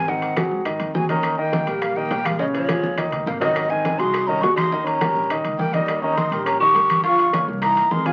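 A breathy, vibrato-laden flute carries the melody up front from the very start of this lively, sunny Afro-Cuban jazz fragment, over a growling, raspy tenor saxophone second line in the background, an intimate concert grand piano with audible action noise and long sustain, and a dark, thumpy pizzicato upright bass; bright, low-tuned congas, tight, high-tuned bongos, ringing metal-shell timbales and woody claves join almost at once, a drum fill arrives at 2.8 seconds, and it all sounds like a very old 78 rpm record, with vinyl crackle and a muffled top end.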